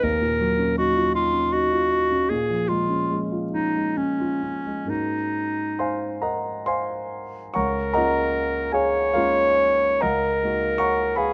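Luminous and dreamy, this short impressionist classical duo for clarinet and grand piano drifts in a slow, rubato 6/8 at around 42-54 BPM in Db major. A clear, present clarinet carries the melody up front with a soft attack as it moves between Db4 and Db5. Beneath it, a dark, mellow concert grand supplies the accompaniment, its deep bass reaching down to Db2 and its upper notes rising to Db6. The harmony glides through rich extended chords, from Ebm9 and Bbm7 to Ab9sus4, before settling onto Db6 at 7.6 seconds as a new section begins, then shifts to Ebm11 over a Db bass. Close, detailed miking and a light reverb keep both instruments intimate, and the passage is cut from a longer piece.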